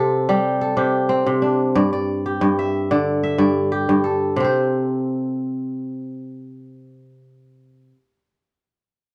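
A solo kora opens this brief, joyful fragment of a longer West African traditional piece, its fingerpicked strings sounding crisp and ringing from the very first moment. The playing moves at a flowing 92 BPM in a straight 4/4, spanning a range from G2 up to E5. The harmony starts on C5, shifts to G5 at 1.8 seconds, and then settles on Am/C as a new section begins at 4.4 seconds. The acoustic kora sits up front in the mix, framed by light reverb and a dark production. The whole clip lasts 8.0 seconds, capturing a sunny, rolling moment of the instrument alone.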